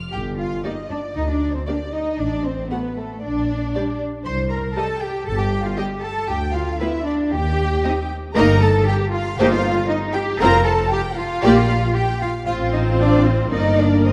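Cheerful and graceful, this quick classical-period movement for string orchestra moves at 116 BPM in 4/4 with a rubato feel, set in G minor and cut from a longer piece. A rich, focused violin section carries the melody from the opening moment, sitting close yet somewhat in the background, while a second violin section adds an expressive, lush second line. A clear viola section joins at 0.6 seconds with distant, focused accompaniment, and the cello and double bass sections hold the bass up front, the cellos smooth-topped and the basses expressive, all bowed with vibrato. The harmony travels through rootless diminished and minor shapes, passes through Eb/G and Cm7/G, and moves via F and Bb to settle back on G minor at 13.5 seconds. A moderate scoring stage reverb and a dark production give the ensemble a mellow glow.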